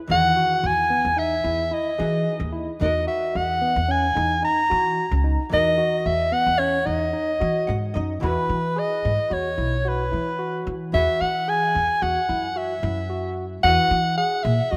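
Progressive instrumental in a driving, bright 5/4, with a breathy soprano saxophone up front carrying the jazz-style melody, its light vibrato and scooped notes softened by subtone and trailed by analog delay. A woody pizzicato upright bass and a gritty, barky overdriven electric piano playing arpeggios sit beneath it, while a clean, double-tracked archtop guitar picks the accompaniment in the background. A hollow-body jazz guitar fill at 7.4 seconds leads into a new section at 8.2 seconds, and the whole fragment has a rough home-demo quality steeped in a lush hall reverb.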